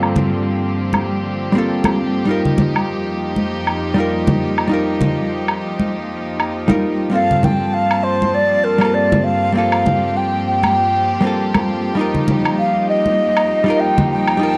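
A dry, gritty recording with light reverb carries this smooth sunset chillout excerpt in G minor at 99 BPM, its sixteenths swung and its harmony moving between Gm11 and F9sus4. A dark, clean, compressed hollow-body jazz guitar sits up front with tape echo, over an earthy, bowed chamber string section with light vibrato and a low-pass filter, while an electronic woodblock under a filter sweep joins acoustic congas recorded in a small room. At 7.1 seconds an airy, expressive baroque flute with vibrato enters to carry the melody, sounding distant yet up front through an analog delay.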